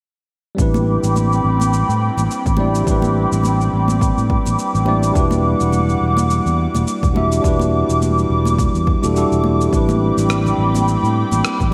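Smooth and wistful, this short excerpt of sunset chillout in A dorian swings gently at 105 BPM, with a clean tine electric piano through a combo amp and an airy, breathy, detuned pad with chorus sitting up front over punchy fingered electric bass, a layered electronic kick, a gritty tape-tinged shaker and rim click, and bright high-tuned congas in the background, as Am11 moves to Em9 at 5.2 seconds and back, all bathed in a lush hall reverb that gives the mix a dreamy glow.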